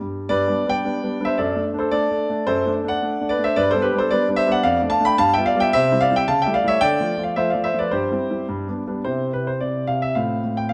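In a lilting two-beat metre played with flexible rubato, this short excerpt from a classical-period piano sonatina moves with a cheerful, playful step. A concert grand carries the whole excerpt alone, clear and up front, its deep bass and long sustain giving the lines a natural body across a range from low F to high B. The harmony settles into a new tonal centre from about 4.6 seconds, passing through G7 and A7 colourings before landing on a fresh phrase at 9.1 seconds that runs to the end at 10.7 seconds. Close, detailed microphones catch the instrument intimately while a moderate recital-hall reverb adds an airy halo around each note.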